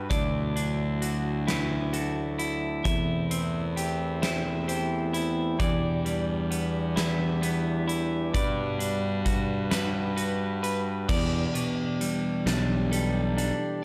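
A fuzzed, overdriven electric bass sits up front in this slow, melancholic post-rock excerpt, its dark, round tone punching out low notes beneath a huge arena drum kit with a fat snare and punchy kick. At 44 BPM in a straight 6/8 and centred on E minor, the piece has a cinematic weight, moving through Dadd9, C6/E, Em7 and Gmaj7 before returning to Em7 at 11.1 seconds as a new section begins. Two clean, picked electric guitars play arpeggios through digital delay: one with a mellow body across a broad range, the other bright and twangy, set back higher up. Behind them, a soft pipe organ on flute stops holds sustained chords with tremulant and a baroque voicing. Light reverb and studio ambience round out the mix, and the passage is cut from a longer piece, ending at 13.8 seconds.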